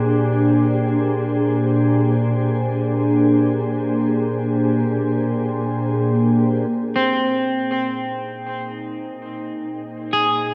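Ambient music in free time, this luminous, serene excerpt from a longer piece rests in Bb mixolydian. A glassy FM pad carries the whole passage with sustained chords, its slow attack and long release giving an ethereal, mellow glow that sits up front, thickened by ensemble chorus and its own built-in reverb. The harmony opens on Bb13 and shifts to Bb7sus4 at 6.7 seconds, where a new section begins. At 7.0 seconds a clean electric guitar enters with picked arpeggios, bright and up front, touched with subtle chorus and tape echo. The dreamy mix is soaked in a lush hall reverb, letting every sustained tone hang in the air.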